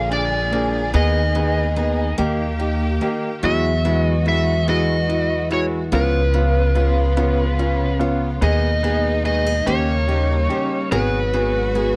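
An overdriven electric slide guitar carries the melody up front from the start of this slow, melancholic pop piece in 6/8 at 48 BPM in G# minor, joined at once by a pizzicato upright bass with thumpy gut strings, picked steel-string acoustic guitar arpeggios with a woody, old-string tone set in the background, and lush bowed strings holding distant sustained chords with vibrato. A clear concert grand piano enters at 0.1 seconds with intimate accompaniment, its long sustain, deep bass and audible action noise adding polish as the aching progression moves through G#m/D#, Eadd9 and C#7 before settling on G#m7. The sound is dry and close, in a 1970s studio style with little reverb, and the passage is cut from a longer piece.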